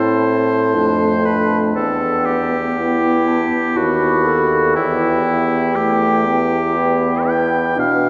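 A clear, up-front oboe carries the second line of this lyrical, serene slow romantic movement for wind quintet in a rubato 3/4, while an airy, hollow silver flute sings the melody from the background, tongued and with vibrato, a close-miked clarinet and a soft-attack French horn fill in the accompaniment, and a mellow bassoon holds the bass up front, the horn and bassoon both with light vibrato, the ensemble set in a wet church reverb in this brief cut from a longer piece.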